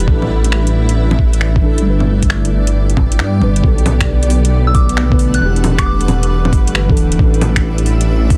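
Future garage with a nocturnal, wistful mood, cut from a longer piece and moving with a swung sixteenth-note feel. A dark, detuned saw bass sits up front, deep and rumbling with tube saturation and pumping under the sidechain along with the other tonal parts, while a muffled, thumpy electronic kick enters at 0.1 seconds with overdrive. The garage kit layers bongos, finger snaps and metallic hi-hats, with soft clipping on the snare and a tape-tinged edge. Muted, felt-like synth keys carry the accompaniment with an intimate, warbling vintage character through chorus and analog delay, as a granular cloud pad holds blurred, evolving chords in its own reverb. At 4.7 seconds a soft, pure FM bell melody appears high above, treated with chorus, phaser, 12-bit sampler grit and delay, and falls silent at 6.3 seconds. The sound is dry, dense and heavily limited, with a cassette-tape colour over the whole mix.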